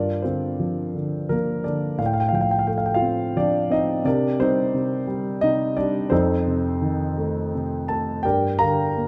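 A dark, mellow concert grand piano plays alone in this hopeful, relaxed classical excerpt, moving with rubato in 3/4 at 86 BPM through Gm7, F/A, Cm7 and F7 before settling back on Gm7 at 8.2 seconds, its up-front, intimate tone carrying deep bass and audible action noise within a moderate scoring-stage reverb.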